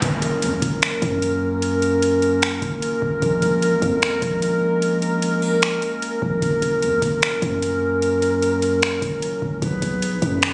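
Heard through a phone recording of the room with light digital reverb, compression and a dulled top end, this dreamy, blissful cloud-rap fragment opens with a faint, thumb-plucked Celtic harp that rings briefly and stops at 0.7 s, while a mellow, tight woodwind section with light vibrato holds up-front classical-style chords that pump with sidechain, a deep sine 808-style bass sustains and decays beneath, and a booming analog drum machine drives a half-time groove of deep kick, metallic hi-hat and finger snaps with a tape-warm edge.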